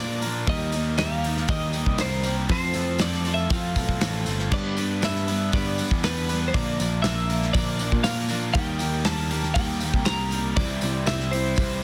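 Hopeful and open-road in spirit, this short folk rock and heartland rock excerpt moves at a steady 119 BPM in a straight 4/4, its chords stepping through Eb, F, G and Bb before returning to Eb and landing on C. A clean, twangy twelve-string electric guitar carries the melody with a bright, compressed edge, set in plate reverb and analog delay. Beneath it, a double-tracked, overdriven semi-hollow guitar plays a gritty riff, while a full-bodied jumbo acoustic guitar picks its accompaniment from the background. A round, punchy electric bass sits up front alongside a natural country drum kit heard in a small room, with dark cymbals, a medium-tuned snare and a punchy kick. A very quiet, jingly vintage tambourine adds sparkle from 0.2 seconds, and the whole mix comes across dense and heavily limited in a modern master with light reverb.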